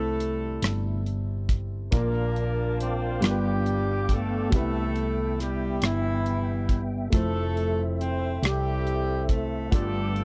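This is a dry, close recording with a 1970s studio character, capturing a short cut from a slow, uplifting gospel piece in C major, moving in a straight 6/8 at 46 BPM counted in dotted quarters. A mellow, tight horn section carries the melody up front with a smooth top and octave doubling, while a grand piano sits in the background, intimate and natural, its action noise audible beneath the chords. A hollow-body short-scale electric bass, dark, round and punchy, holds the low end up front, and an acoustic studio drum kit enters at 0.2 seconds with hi-hat, rim click and a punchy kick in an airy, polished room. At 1.9 seconds a soft, flute-like tonewheel organ joins with clean sustained chords, its key click and chorus vibrato turning through a fast rotary speaker. The harmony moves from C6 through Bbmaj7, G7 and Cmaj7 to Fmaj7, reaching G7 near the end for a hopeful lift.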